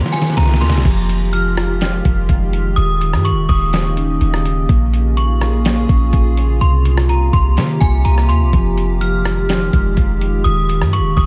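A light reverb and digital ambience frame this spacious, ethereal excerpt of atmospheric cloud-rap in F minor, moving at 125 BPM in a half-time 4/4 feel. Muffled, pitched-down sampler drums with a thumpy kick sit up front beside a deep, boomy 808-style sine bass, opening with a drum fill before an electric guitar on the edge of break-up enters at 0.9 seconds with dark, picked arpeggios through analog chorus, low-pass filter and delay. Above them, a glassy FM pad holds sustained chords with ensemble chorus and sidechain pumping, while a metallic, inharmonic FM bell rings out a high melody with chorus and delay over chords moving from C7sus4 through Fm9, Eb7 and Bbm7.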